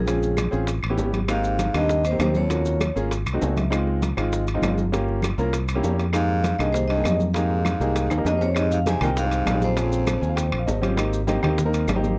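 A bright, punchy fingered electric bass sits up front in this short cut from a longer Afro-Cuban jazz piece, pushing a sultry, driving groove in a brisk, straight four. Vibraphone, played with medium hard mallets and the motor off, carries the melody in a metallic, ringing voice, while a clear baritone saxophone with vibrato and subtone plays a second line beneath it. Both are heard from the start until 2.9 seconds, then return at 6.1 seconds. A baby grand piano with a natural tone and short sustain accompanies throughout, adding fills along the way, as the harmony moves through rich seventh, ninth and altered chords. The percussion mostly stays in the background: congas, woody claves, tight high-tuned bongos kept very quiet, grainy maracas and metal-shell timbales, with a drum fill leading into a new section at 8.6 seconds. The sound is a dry, close 1970s-style studio recording touched with light reverb.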